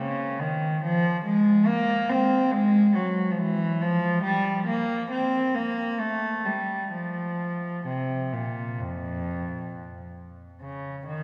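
Introspective and flowing, this baroque-style suite movement for unaccompanied cello unfolds with a free, rubato feel in 4/4, cut from a longer piece. A single bowed cello carries the whole passage from F2 to C4, its gut-string tone nasal and reedy in a period manner, sitting up front yet with a distant quality. A wet church reverb with a 3.6-second decay surrounds the playing, lending the recording the spacious air of a church or concert hall.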